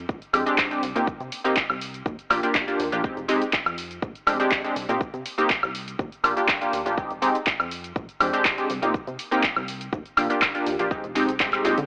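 A plucky analog bass opens this sunny, feel-good slice of filtered disco house, its wave-folded sawtooth-and-square tone snapping in with a fast filter pluck before decaying into a mellow tail as sidechain pumping makes it breathe. An electronic kick arrives almost at once, layered and tape-toned, alongside an up-front analog drum machine whose overdriven handclaps, hi-hat, shaker and woodblock pump against the beat. Just after, a funky polysynth comp enters with detuned, vintage sawtooth chords that warble through chorus and phaser, a filter sweep colouring its sustained chords as they pump. The harmony cycles through Bb13, Cm7, Ebmaj7 and Fm7 in a steady straight groove. The whole mix sits in a moderate echo chamber with a dry, gritty hardware character, its cassette-tape and AM-radio colour lending the cut a lo-fi, broadcast haze.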